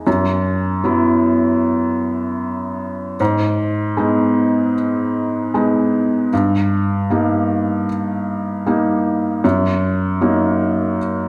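Nostalgic and hopeful, this short folk passage cut from a longer piece moves at 77 BPM in a straight 4/4, tuned to A4 = 444 Hz, with a solo felt-muted upright piano sounding soft and intimate from F#2 to E4, its thin felt and audible action noise placed up front, as the harmony passes from F#7sus4 through G#m and D#/G to F#6 inside a recital hall whose wet reverb lingers for 1.7 seconds.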